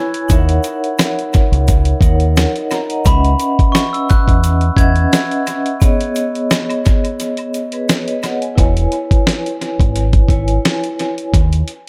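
A bright, ringing vibraphone with medium motor vibrato floats over a moody, reflective boom-bap hip-hop groove at 87 BPM with a light swing, carried by a gritty, compressed sampler-style drum kit with a thumpy kick, a dark, round, punchy fingered electric bass, and a dry tube shaker and woodblock tucked in the background, while a sparkling, bell-like glockenspiel plays a brief melody from 3.1 to 5.3 seconds, all in a small-room, echo-heavy mix cut from a longer piece.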